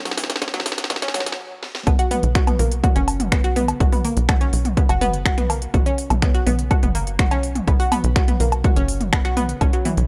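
Up front and punchy, an electronic kick drives this dark, hypnotic melodic techno excerpt at 124 BPM, where a short build-up with a drum fill, a filter sweep on the nasal, detuned analog pluck arpeggios and a brief stop gives way at 1.9 seconds to a drop over a tight, sawtooth sequencer bass with sidechain pumping, a cracking-snare techno kit of smooth hats, snaps, toms and woodblock, and a dry, gritty hardware sound.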